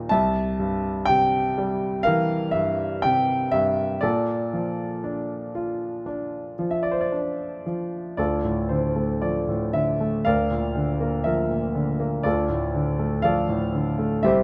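Close, detailed microphones and a light reverb place a warm concert grand piano up front, its smooth, vintage tone resting on a deep bass. This is lyrical solo classical piano in D minor, reflective and melancholic, moving at a slow 59 BPM in 4/4 with uneven beats and free rubato. The piano, tuned slightly low to A4 = 437 Hz, spans C2 to A5 and carries the whole 14.4-second fragment of a longer piece on its own. The opening passage drifts from C7 to Bbmaj7. At 8.2 seconds a new passage settles into Dm, passing through Bb/D before returning to Dm.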